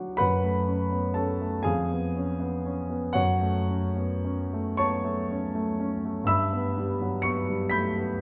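Melancholic and mournful, this brief fragment of a romantic classical nocturne unfolds in 6/8 metre with a freely breathing rubato. A solo concert grand piano carries the whole passage from 0.0 to 8.2 seconds, its tone warm and natural, with a deep bass and an up-front presence. The instrument spans a broad compass, from the low register up into the high treble. The harmony moves from F#m to C#7/E# and back to F#m before turning to Em/G near 6.3 seconds. A moderate recital hall reverb surrounds the piano, giving the short section a sense of space before the excerpt is cut off.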